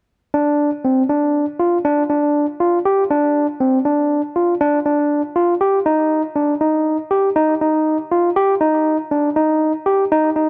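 A dark studio sound with a touch of moderate reverb frames this driving, bright fragment of progressive instrumental music in 11/8 at 240 BPM (counted in eighths), where a lone tine electric piano, barky, clean and up front, plays a straight-feel solo with delay from 0.3 to 10.5 seconds before the cut from the longer piece.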